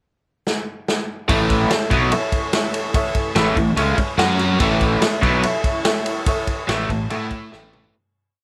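The drums open with a fill at 0.5 seconds, and at 145 BPM in a straight 4/4 this short classic rock piece in A major kicks into a confident, driving riff at 1.3 seconds. The vintage kit sits up front with a punchy kick, a medium-tuned snare, ride cymbal and toms, giving a big rock groove in a natural studio room. Two overdriven electric guitars carry the power-chord riff, one biting and touched with phaser, the other compressed and set in the background. A fuzz-drenched fingered bass, dark and round, drives in eighth notes and doubles the guitar riff. A woody upright piano strikes close-voiced chords in quarter notes, while a very quiet, lush string machine with a sawtooth sub octave, ensemble chorus and phaser holds chords that swell and shift inversions. The piece fades out from 6.3 seconds, with a final piano fill entering at 6.7 seconds and a drum fill at 7.5 seconds.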